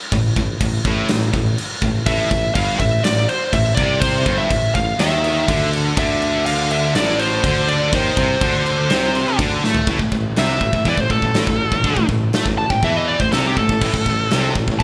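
Epic and aggressive, this heavy metal passage, cut from a longer piece, opens in a half-time feel over a steady A minor chord. Three distorted guitars grind out the riff together: a compressed one and a high-gain one sit in the background, while a sludgy, double-tracked, overdriven guitar is very quiet underneath. A mellow tuba carries the bass line with scooped, jazz-style notes, and a big acoustic rock kit stands up front with a punchy kick, a medium-tuned snare, toms, crash and china cymbals, all wrapped in gated reverb and a stone-room sound. A high-gain lead guitar enters up front at 2.1 seconds. After a drum fill at 9.6 seconds, it breaks into a solo from 9.9 seconds. The bright 1980s-style digital production adds light reverb and small-room ambience.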